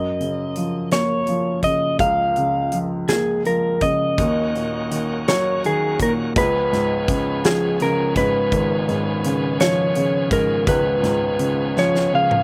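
A heartfelt, swaying six-eight pop ballad at 55 BPM in F# major, cut from a longer piece, where a bright, slightly broken-up electric slide guitar carries the melody up front over a soft, felt-muted upright piano and a huge arena drum kit with a fat snare and punchy kick, joined at 4.2 seconds by shouting, lightly overdriven tonewheel organ chords through a fast rotary speaker as the harmony moves from F#maj7 to D#m7 and C#7, with a drum fill at 11.8 seconds, all in a dry, roomless outdoor sound.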